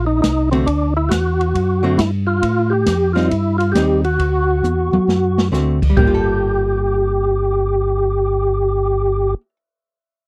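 A bluesy, soulful soul jazz organ trio excerpt with a swung feel opens on a fat, lightly overdriven tonewheel organ melody, full of key click and slow rotary shimmer, over a round, mellow tonewheel organ bass line. It is soon joined by an up-front acoustic drum kit with a boomy kick that plays a fill at 4.6 seconds and stops at 6.1 seconds, and then by a dark, clean, picked hollow-body archtop guitar comping, all captured in a dry, close 1970s-style studio sound.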